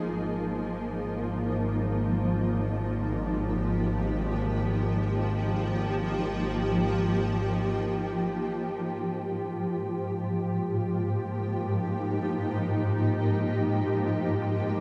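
A shimmering, bright pad of slow-attack sustained chords with chorus and octave-up shimmer opens this luminous, weightless ambient fragment in free time, sounding together from the start with an intense, clear bowed double bass section with vibrato on a low Ab and a barely audible evolving analog drone over an Absus2 chord, until the bass stops at 8.3 seconds and a faint, glassy glass harmonica with vintage beating takes its place, all soaked in a huge dreamy reverb.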